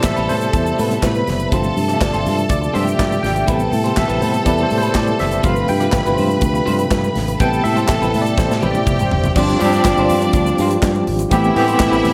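Disco at 123 BPM with a glamorous, sultry mood, this excerpt features a barky, overdriven tine electric piano with fast tremolo soloing up front until 9.4 s over Am9 and G7sus4 chords, backed by a lush, biting string section, a dark French horn section holding sustained chords, a slightly broken-up electric guitar with analog chorus in the background, a fingered electric bass, a polished drum kit with handclaps and a tight kick that plays a fill from 8.4 s, very quiet high-tuned congas, and a grainy egg shaker, all in light small-room reverb.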